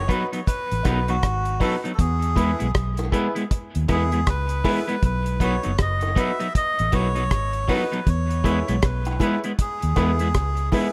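A light reverb sits over this short cut from a longer roots reggae piece, which moves at 79 BPM in 4/4 with a swung sixteenth-note feel and an uplifting, warm mood in B major. Up front, a deep, smooth drum kit with a tight kick, hi-hat and rim click and a rolled-off top pairs with a dark, round, foam-muted electric bass that sounds amped and punchy. A reedy, breathy melodica carries the melody with a nasal, close-miked tone and tape echo, while an electric guitar at the edge of break-up adds twangy, slightly broken-up accompaniment, also touched by tape echo. A clear upright piano plays woody, intimate stabs with its action noise audible, and very quiet, high-tuned bongos join at 0.9 seconds from a distant, large room. The harmony alternates between B and E, moving to E at 2.0 seconds and back to B at 5.0 seconds.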